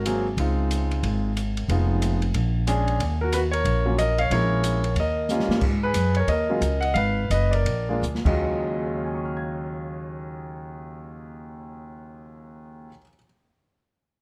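Piano and upright bass open this late-night, cool jazz trio passage together, with the drums joining a moment later in a swung 4/4 at 155-184 BPM in Eb minor. The concert grand carries the melody up front, its clear, polished tone showing deep bass, long sustain and audible action noise under a plate reverb, while the chords move through shades like Dbmaj9, Bb7#9 and Ebm7. The pizzicato upright bass sits up front, woody and warm with steel strings. The kit sounds dark and smooth from a small room, with dark cymbals, a rolled-off top, a medium-tuned snare and a boomy kick, and it plays drum fills at 5.3 and 8.0 seconds while the tempo slows from 5.6 to 8.4 seconds. The drums stop at 8.3 seconds as the harmony lands on Ebm11, leaving piano and bass to carry the intimate, lightly reverberant sound until the piano's final note at 13.2 seconds, where this cut from a longer piece ends.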